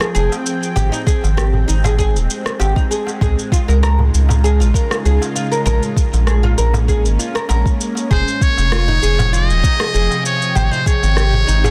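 An organic downtempo piece in F minor at 98 BPM opens with a bright, string-like drone holding sustained chords, given a slow attack, detuned sawtooth body, phaser, vibrato and its own reverb, plus a sidechain pumping motion. Alongside it, a woody, plectrum-plucked fretless oud spins arpeggios through tape echo, while an electronic rim click and shaker, soft-clipped on the snare, mix with a crisp metal-shell darbuka played by soft hands in the background. A deep, round analog bass arrives almost at once, dark and up front with a fast attack and the same pumping pulse, and a soft electronic kick drum joins at 1.1 seconds. The harmony moves from Fm through Abmaj7, Db6 and Bbm7, reaching Fm7 at 8.1 seconds as a buzzy, thin trumpet with a metal mute enters up front for a jazz-style solo line with light vibrato and tape echo, before turning back to Abmaj7. The meditative, warm mood sits in a digital ambience with a dense, heavily limited modern master, and this cut from a longer piece lasts 11.7 seconds.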